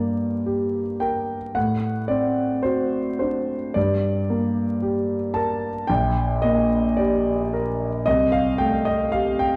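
A concert grand piano sits up front with an intimate, natural tone, deep bass and audible action noise, carrying a yearning, melancholic romantic nocturne with a rubato feel across this brief cut from a longer classical piece. Its chords move from Gm through D7/A and Gm/Bb to Cm6, spanning Bb1 to A5. A moderate recital hall reverb and a dark production lend the sound depth, while vinyl crackle adds an aged patina.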